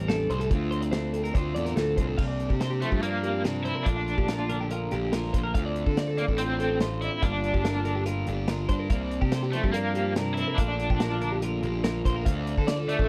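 A crunchy overdriven lead guitar with tremolo and slapback echo carries the melody from 2.8 s in this intricate, restless math rock and midwest emo excerpt, set over two clean, twangy twelve-string electric guitars (one comping low chords, the other spinning high arpeggios), a fuzzy, up-front picked electric bass and a dark, tight acoustic drum kit with a rolled-off top, all captured in a dry, close 1970s-style small room.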